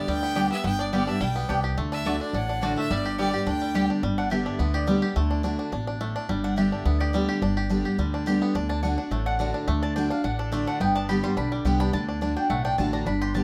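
Set in a moderate studio reverb, this rustic, joyful bluegrass excerpt opens with a clear, intense fiddle heard at a distance, carrying the melody with light vibrato alongside a twangy, percussive fingerpicked banjo until the fiddle drops out at 3.9 seconds. Up front, a bright, full-bodied dreadnought guitar picks the accompaniment over a woody pizzicato upright bass as the chords move between G and D. A round, double-strung mandolin adds stabs from 0.4 seconds and takes a solo from 4.0 seconds to the end.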